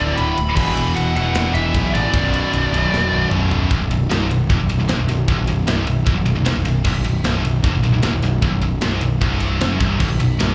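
An up-front, fuzz-soaked picked bass drives this relentless, aggressive heavy metal passage, joined by two scooped high-gain guitars grinding out riffs, a double-tracked overdriven guitar riff in the background, a high-gain lead guitar melody that stops at 3.3 seconds, and a tight, polished drum kit with bright cymbals that enters at 0.2 seconds and plays a half-time opening and a drum fill before the second section at 3.7 seconds, the whole performance captured as a live club gig through the venue's PA with capped highs.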